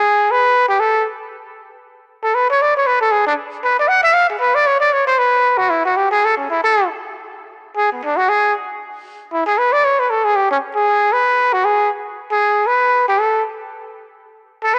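Jazz at a brisk 232 BPM in 4/4, with a relaxed, swinging eighth-note feel, this short excerpt is cut from a longer piece. A lone trumpet with a straight mute carries everything, moving between B3 and F#5 for the full 14.8 seconds. Its tone is nasal and breathy with a soft attack and light vibrato, close-miked and up front so the playing feels whispered and intimate. The passage falls into two statements of the same section, the second beginning at 8.8 seconds. A lush hall reverb with a 2.7-second decay surrounds the horn, while the home cassette recording lends a tape-tinged character.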